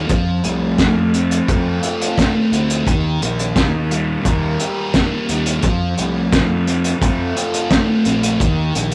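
Trippy and hazy, this short psychedelic rock excerpt at 87 BPM in F mixolydian rides a thick, double-tracked fuzz guitar riff treated with phaser over a round, punchy overdriven fingered bass and a muffled, cloth-damped drum kit with a fat snare and tight kick, all caught in a rough, saturated rehearsal-room sound with light reverb as the chords move between F and Eb.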